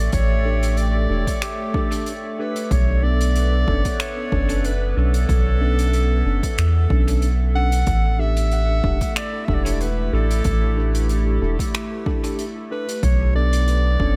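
A bright clarinet carries the melody in a classical solo style, its phrases trailing into dub echo across this meditative, hazy ambient dub excerpt at 93 BPM in 4/4, with a light swing on the sixteenths. Beneath it, a warbling, tape-like pad holds sustained chords with a slow attack and long release; its detuned, lo-fi, vintage tone is thickened by chorus and its own reverb. A deep, round sub bass sits up front in the low end, while an overdriven, punchy electronic kick drives the pulse from 0.1 seconds. A soft-mallet kit with finger snaps and hi-hat adds a roomy acoustic texture, also washed in dub echo. A mellow tine electric piano drops clean, echoing stabs from 0.5 seconds, as the harmony moves slowly between A7sus4 and Bm9 inside a small room ambience.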